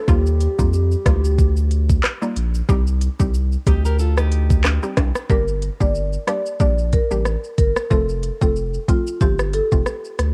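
A knocking, overdriven island pop drum kit with crisp hats, handclaps and rim clicks drives this hypnotic, tough dancehall excerpt over a thick, saturated sub bass, with a bouncy square pluck accompaniment, a dark clarinet-like synth lead in the opening 2.0 seconds, tube shaker and timbales in the background, a brief fingerpicked nylon-string guitar arpeggio at 3.7 seconds, and a woody, boxy marimba melody entering at 5.3 seconds over Gm and F, all with a lo-fi cassette character and little reverb.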